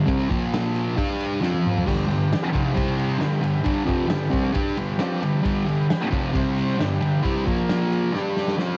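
Rowdy and raw, this short garage rock cut is driven by a thick, double-tracked fuzz guitar riff up front, backed by a punchy, gritty drum kit with fills at 1.4 and 8.1 seconds, while a buzzy combo organ with light vibrato enters at 1.9 seconds to hold sustained chords in the background, the whole set in a small room with spring reverb on a lo-fi home cassette recording.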